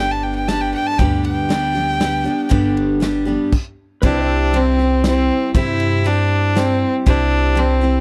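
A dry, close 1970s-style studio sound frames this down-home, nostalgic honky-tonk and classic country tune in 3/4, cut from a longer piece. An intense, boxy fiddle with light vibrato carries the melody up front and takes a solo through the opening 4 seconds, with a stop falling between 3.5 and 4.0 seconds, while a bright dreadnought acoustic guitar picks the accompaniment and a woody, thumpy upright bass holds the low end. A punchy kick and medium-tuned snare, joined by ride and crash cymbals, come in at 0.5 seconds, and a twangy pedal steel guitar sits in the background with sustained chords and volume swells.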